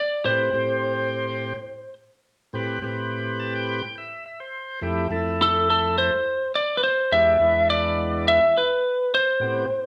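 Recorded live in one large studio room with moderate reverb, this soulful, mournful blues excerpt at 105 BPM in A minor sets a twangy, slightly broken-up electric lead guitar up front alongside a thick, gritty overdriven tonewheel organ with key click and a slow rotary speaker, moving through Am7, Fmaj7 and E7#9 chords, with an organ fill at 3.1 seconds, the guitar melody returning at 5.4 seconds, and a stop at 9.4 seconds.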